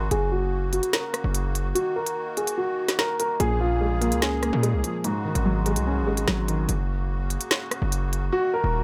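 A dark grand piano melody opens this tense, cold drill excerpt at 146 BPM in a half-time feel, over reedy, shimmering musette accordion chords and a heavy, saturated 808-style bass, with a filter sweep running through the first 3.4 seconds and the kick briefly dropping out. The electronic drum kit sits up front with crisp hi-hats, rim clicks and a woody snare, and from 3.4 to 6.7 seconds a soft, felt-muted upright piano adds intimate accompaniment as the chords move from Gb and Ebm through Bbm7 and Ab7sus4. The hi-hats cut out near the end just as the grand piano briefly returns, in light reverb and studio ambience.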